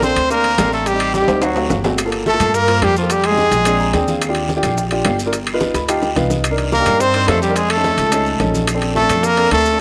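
Afro-Cuban jazz at a brisk 215 BPM in G minor, this sunny, lively passage is cut from a longer piece and moves along on a straight 4/4 feel. A bright, punchy trumpet leads up front with forceful, scooped notes and light vibrato, while a clear tenor saxophone with a soft attack carries a second line beneath it; both horns play from the start to 4.1 seconds, drop out, and return at 6.7 seconds. A natural-sounding baby grand piano comps throughout, slipping in short fills, and a woody pizzicato upright bass anchors the low end. The percussion bed is busy but tucked low: ringing metal-shell timbales sit nearest the front, with round low-tuned bongos, ringing congas, grainy maracas, a raspy guiro and distant claves filling in the background. Chords move through rich seventh and ninth harmonies such as Bbmaj7, Am7b5, Gm7 and Ebmaj9. A lush hall reverb opens up the sound, though the overall mix has the rough feel of a home demo.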